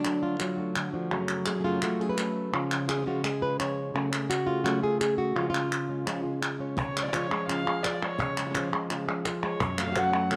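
An up-front, fingerpicked flamenco guitar carries the melody in this intense, passionate flamenco excerpt. It is joined throughout by a second acoustic guitar playing chordal stabs and by crisp, saturated palmas hand claps, all set in a small, echoing room. At 6.8 seconds a distant, dark violin with a nasal, reedy gut-string tone enters for a bowed solo on a second line, trailed by slapback echo, while a woody, close and dry cajon with faint snares sits low in the mix.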